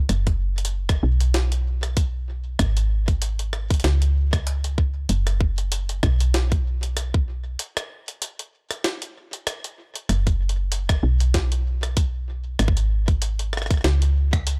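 A swung sixteenth-note groove in 4/4 drives this glitchy, melancholic IDM excerpt, where a tight, up-front electronic kick sits beneath a compressed, pitched-up jungle sampler-style kit of hi-hat, rim click and high-tuned snare, a soft, round FM bass with a woody, fast-attack, decaying tone holds the low end, and a break arrives between 7.6 and 10.1 seconds, the whole recording carrying a dry, gritty hardware character with digital ambience.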